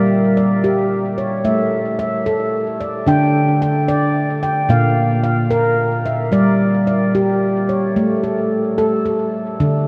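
A lone handpan rings out up front with sharp finger strokes on stainless steel, setting a meditative, hypnotic world mood in a straight 6/8, its notes trailed by tape echo. A huge ambient reverb places it in a vast, echoing space with a cassette tape grain, as the harmony moves through G5, A, Dsus4 and Bb5 before a new passage begins on A at 8.0 seconds. The recording is cut from a longer piece and ends at 9.9 seconds.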